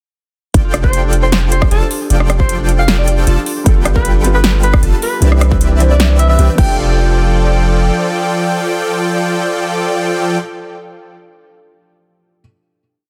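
Bright and euphoric, this short half-time future bass piece opens straight into a drop at 0.5 seconds, where huge detuned supersaw chords throb against a punchy electronic kick, a big-room kit with metallic hats and rim clicks, and a deep sine 808 bass, while a distant, vibrato-laden alto saxophone plays short jazz-style phrases, an airy lead and a ringing fingerpicked harp shimmer in arpeggios behind, and a felt-muted upright piano enters at 3.6 seconds and carries on softly to close after the final hit at 6.8 seconds.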